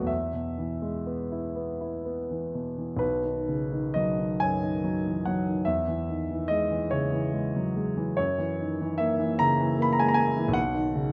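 Serene and dreamy, this romantic classical nocturne for solo grand piano unfolds in a lilting 6/8 with free, rubato timing, its harmony drifting from E toward B at 3.0 seconds and passing through softly colored chords before settling back on B near the close. The piano sits up front with a warm, natural tone, spanning from deep bass notes to the upper middle register. A moderate large-room reverb gives the sound a gentle sense of space in this short fragment cut from a longer piece.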